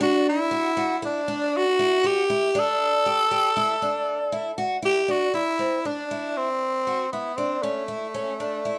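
Set in a straight 5/4 at 118 BPM and tuned to A4 = 439 Hz, this driving, intricate progressive instrumental is cut from a longer piece, moving from Dadd9 and Gsus2 to C around 5.1 seconds. A raspy, gritty tenor saxophone carries the pop-style solo melody up front with vibrato, its edgy, punchy tone ranging from A3 to A4. Alongside it, a picked twelve-string acoustic guitar plays shimmering, octave-doubled arpeggios with audible finger squeak, all set in light reverb.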